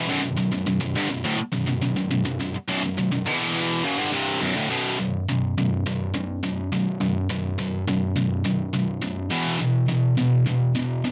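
A straight 4/4 metal pulse at 104 BPM in B minor carries this dark, epic cut from a longer piece, where a lone high-gain electric guitar, bright, picked and double-tracked, sits up front with cassette-tape grit from 0.0 to 11.1 seconds, moving through B5, E5 and Bm chords within a small booth-like room on a home cassette recording.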